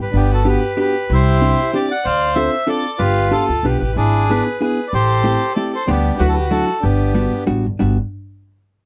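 A musette waltz in G major at 188 BPM, its swung eighths and rubato giving this short excerpt a whirling, nostalgic lilt. The reedy, airy bandoneon carries the melody up front, while a single rich violin, bowed sul tasto with a soft attack, floats a pure second line. An acoustic upright bass plays woody pizzicato, sitting up front and carrying on until 8.0 seconds, after the bandoneon and violin stop at 7.4 seconds. A clean, compressed hollow-body electric guitar enters at 0.5 seconds with fingered accompaniment, its tone dark and close. The harmony moves from Gmaj7 through Cadd9, Dm7, G7, E7/G# and Am7 before settling back on Gmaj7, all captured in a dry, intimate 1970s-style studio sound.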